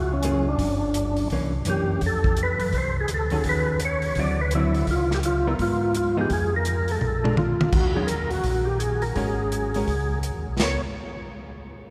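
Soul jazz organ trio in a greasy, soulful swing, where a lightly overdriven, percussive tonewheel organ sits up front with the melody through a slow rotary speaker, a round, mellow second organ carries the bass, a dark, clean hollow-body guitar comps from 0.2 seconds, and a tight, rolled-off soul drum kit adds a fill at 7.0 seconds, all bathed in a long cathedral reverb in this fragment cut from a longer piece.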